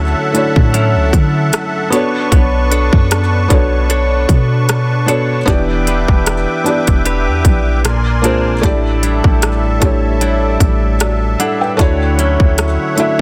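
A soft, felt-muted upright piano sits up front with audible action noise, carrying the accompaniment in this moody, longing contemporary R&B excerpt at 76 BPM in E dorian, moving through Dmaj9, Bm9, Em7, A#9 and A7sus4 before returning to Dmaj9. A deep, boomy 808-style bass with a noise layer and a trap drum kit, with its hard-clipped kick, crisp hats and rim clicks entering at 0.3 s, drive a lightly swung 16th-note groove, while a reedy, shimmering musette accordion holds sustained chords and a clean, direct-recorded electric guitar picks compressed arpeggios through digital delay. The bass drops out at 12.8 s, and the whole mix carries light reverb under a dense, heavily limited modern master.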